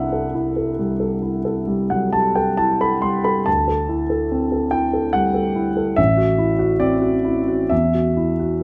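A grand piano opens alone on a C6/9 chord, setting a wistful, mysterious tone for this short, impressionist classical passage cut from a longer piece. The playing moves in a rubato feel around 64-73 BPM in 5/4, spanning from a deep A1 up to C6. The harmony drifts through D9sus4 at 3.5 seconds and Am6 at 6.0 seconds before arriving at Esus2 at 7.7 seconds. The instrument sounds warm, polished and present, with a long sustain that lets each chord ring. Close, detailed microphones place the piano up front, framed by a light reverb.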